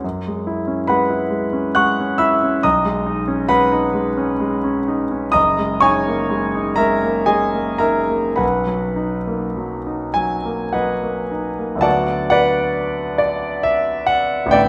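A clear, intimate concert grand piano plays alone through this luminous, hazy fragment of impressionist classical music in a rubato triple metre, its deep bass and long sustain ringing in a moderate recital-hall reverb with the action noise audible up close, as suspended and extended harmonies give way to a new section on a D6 chord at 11.9 s.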